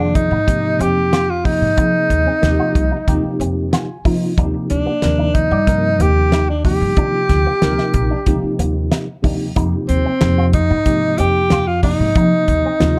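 Intense and slick, this 92 BPM electric jazz fusion excerpt in F dorian sets a breathy, whispered alto saxophone melody with vibrato up front over a worn, slightly out-of-tune tine electric piano with overdrive and phaser that adds fills at 3.4 and 12.8 seconds, twangy envelope-filtered guitar stabs with analog chorus in the background, a woody, thumpy pizzicato upright bass, and a dry, damped 70s drum kit with a fat snare and tight kick, while low-tuned congas join at 9.6 seconds, all moving from Fm9 to Ebmaj7 and back in a dark production.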